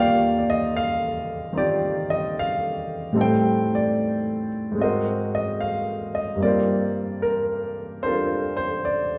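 A tender, late-night jazz ballad at 74 BPM in 4/4 with a swung eighth-note feel, played by a solo baby grand piano across its full 9.2 seconds, ranging from Eb2 to G5. The piano sits up front with a natural, warm tone and short sustain, moving through Ebmaj9, Am7b5, Ab9 and Gm11 in a brief passage cut from a longer piece. A wet recital-hall reverb with a 1.7-second decay gives it the spacious air of a church or concert hall.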